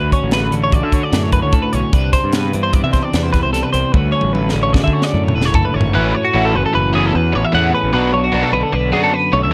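Two clean, compressed twelve-string electric guitars open this bright, playful math rock and midwest emo passage in 5/4, one holding the accompaniment while the other spins bright, up-front arpeggios touched with slapback echo over a punchy fuzz bass and a crisp, airy fusion kit with a high-tuned snare. The drums close with a fill from 3.9 s and stop at 5.9 s, where a double-tracked, overdriven electric guitar riff enters as the chords move through A69 and Bm7. The production is dark and dry, and the passage is cut from a longer piece.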